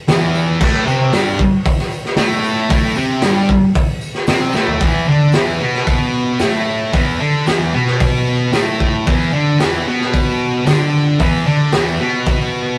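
A straight 4/4 pulse at 113 BPM drives this swaggering, raw garage rock excerpt, where a thick, double-tracked fuzz guitar riff sits up front and shifts from a Gsus24 chord to E5 just after a drum fill at 4.6 seconds, over a gritty acoustic kit with a punchy kick, a high-tuned snare and dark cymbals, while a very quiet, jingly tambourine lies beneath, all captured in a rough rehearsal-room recording with light reverb, tube saturation and lossy compression artefacts.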